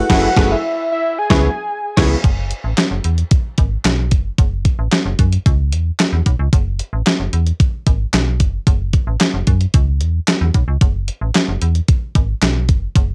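Danceable and late-night, this clip of early-eighties boogie funk moves in a straight 4/4 and comes from a longer piece. It opens with the full band hitting an accent together as a fat, warbling analog lead carries the melody up front, thickened with chorus and analog delay. A worn, slightly out-of-tune tine electric piano and a twangy, compressed clean electric guitar riff fill out the opening bars over F#m11 and C#m7. By 2.2 seconds the lead, piano and guitar have stopped, leaving a metallic FM bass with a fast, decaying attack and a crisp 8-bit digital drum machine with a thumpy kick, fat snare, hi-hat, handclaps and crash cymbal. Through to 13.1 seconds the harmony alternates between E, C#m and chordless stretches, all with light reverb and the hazy character of a home cassette recording.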